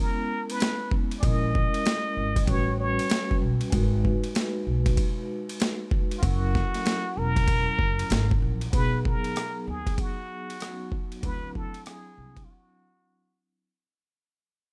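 Relaxed and unhurried, this jazz-hop excerpt in swung 4/4 sets a jazz-style plunger-muted trumpet solo, up front with wah-wah tone, light vibrato and scooped notes, over a dark, ringing vibraphone accompaniment with slow motor vibrato, both parts softened by a low-pass filter. A gritty, overdriven boom bap sampler-style drum kit, up front with a thumpy kick and high-tuned snare, joins a woody pizzicato upright bass in small room ambience, until a filter sweep and fade-out begin at 8.7 seconds and the drums stop at 12.5 seconds for a closing break.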